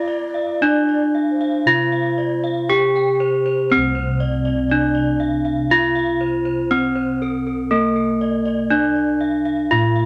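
The bronze metallophone carrying the melody stands out most, bright and ringing under a horn mallet, sitting up front in a mid-forward place throughout this 10-second cut from a longer Javanese gamelan piece in C slendro at 60 BPM in a straight 4/4. A second bronze metallophone plays arpeggios higher up, its paired tuning producing shimmering beats that lend the music a ceremonial glow. Bossed gongs struck with padded beaters hold the bass, round, soft and full, heard close and dry with a gentle beating tone. A mellow bass bansuri adds a distant, airy second line with vibrato and a crisp attack, slightly unsteady, before dropping out at 3.1 seconds. A moderate studio reverb surrounds the ensemble as the opening section gives way to a new section at 3.7 seconds.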